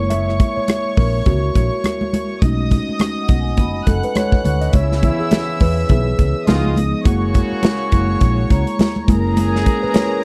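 Smooth and cinematic, this lush 1970s-style soul excerpt in a swung 4/4 features a mellow tine electric piano soloing throughout over a round, dark hollow-body bass, a tight up-front drum kit with medium-tuned snare and rim click, and ringing congas in the background, while a floating sul tasto violin section drifts above, airy vibraphone touches appear from 3.0 to 5.0 seconds and again from 8.5 to 9.3 seconds, and a clear jazz-style horn section adds stabs from 4.7 seconds, all in a dry, close studio sound.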